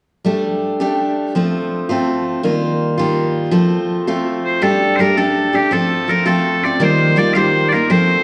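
A full-bodied, freshly strung steel-string acoustic guitar opens at 0.2 seconds, picking an up-front accompaniment through Gsus2, F and Ebadd9 chords in a wild, spirited Celtic folk piece in G minor at 110 BPM in 6/8, before loud, piercing solo bagpipes enter at 4.4 seconds with a continuous melody, all set in a wet recital-hall reverb with a dark production in this passage cut from a longer piece.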